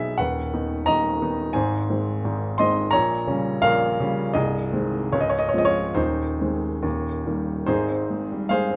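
A warm baby grand piano carries this short romantic character piece alone, sitting up front with a natural tone and short sustain in light reverb. Cut from a longer piece, the passage runs about 8.8 seconds in Ab major and 2/4, moving freely with rubato at a tempo that drifts between 68 and 90 BPM. The mood is hopeful and lyrical, with the piano spanning a broad range from C1 up to C6. The harmony passes through a B/D# chord, Ab, a Gdim/Bb, Ab/C and a Dbmaj7 before leaning on Ab/Eb and Eb. That cadence resolves to Ab at 7.7 seconds, where a brief new section begins and carries on to the end.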